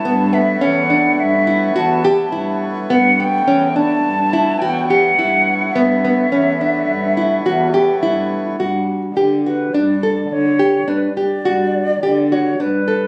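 This contemporary chamber piece in 5/4 moves at a straight 105 BPM in G lydian, with a playful, hopeful mood, and it is cut from a longer work. A hollow, pure concert flute carries the tongued melody with vibrato, sitting close and up front, while a fingerpicked nylon-string guitar spins classical arpeggios with audible finger squeaks, equally forward in the balance. Underneath, a single bowed cello plays a dark, floating bass line sul tasto, its soft attack and smooth top keeping it gentle. A reedy, nasal hand-pumped harmonium breathes sustained chords over Aadd9 until 8.6 seconds, when it drops out as the music shifts to Gmaj7 for the closing passage. The sound has the intimacy of a phone recording in the room, with studio ambience, light reverb and compression.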